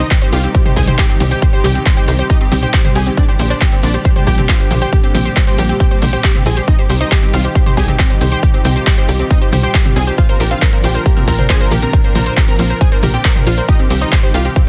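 This is a short excerpt of uplifting trance, emotional and driving, built over a straight 4/4 pulse in which nearly every part breathes with sidechain pumping. A detuned supersaw stab carries the melody, airy and punchy with a noise layer and digital delay. Beneath it sit a lush, thick pad of detuned sawtooth and square voices with a slow attack, long release and chorus in the background, and a round analog pluck spinning arpeggios through chorus and dub echo. A tight sequencer bass, up front with a sawtooth and square tone touched by ring modulation and a fast, decaying filter pluck, drives the low end alongside a layered big-room kit of handclaps, hi-hat, shaker and toms. From 0.1 seconds a punchy electronic kick sits up front, anchoring the Cm, Gm/Bb and Bb movement. The sound is dry and dense, with a heavily limited modern master.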